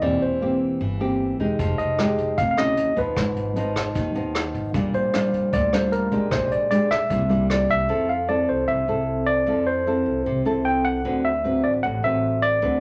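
A clean tine electric piano carries the melody up front, its tone colored by its own built-in speakers, in this relaxed, breezy bossa nova cut from a longer piece, moving at 152 BPM in a straight 4/4. Beside it, a thumb-plucked classical nylon-string guitar gives warm, close accompaniment, while a pizzicato upright bass with steel strings adds a woody low end at a lower level. A vintage brush drum kit enters at 1.6 s with hi-hat, a tight kick and rim clicks, its small-room sound mid-forward and rolled off at the top, and it drops out at 7.8 s. The harmony drifts through chords such as Fm9, Eb7b9 and Abm6 before settling onto Fmaj7 and then a D13 in the closing passage. A moderate large studio reverb gives the whole recording an airy sense of space.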